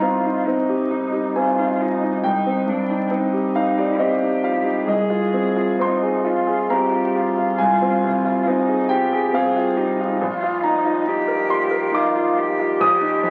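A slow, rubato pulse in 3/4 at 68 BPM carries this longing, melancholic neoclassical piece for piano and strings in C minor, cut from a longer work. An up-front grand piano with clear tone and long sustain plays the accompaniment throughout, while a distant, veiled cello, bowed con sordino by one player with light vibrato and portamento, adds a second line. The harmony moves from Cm to Fm7/C at 4.9 seconds and Bbsus4 at 10.2 seconds, heard through a wet, large studio reverb and the crackle of a very old 78 rpm record.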